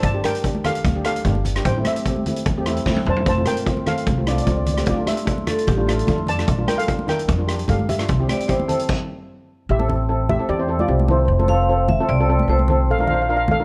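A lightly swung sixteenth-note groove in common time drives this sunny, carefree calypso, cut from a longer piece and carried by a small-room street-band drum kit. The kit sits up front with a boomy kick, a medium-tuned snare and dark cymbals, drops in a fill at 2.9 seconds, and falls away at 9.0 seconds as the band hits a brief stop. Beneath it, a woody pizzicato upright bass on steel strings anchors the low end, while bright, thin-skinned congas patter close and dry in the background. A mellow lead steel pan, played with soft rubber sticks, sings a shimmering melody over a double-seconds pan whose vintage, band-limited tone fills in the chords. From 5.5 seconds a vibraphone struck with medium hard mallets adds a ringing second line with its motor off, returning once more in the closing section over a light reverb and a dark, warm production.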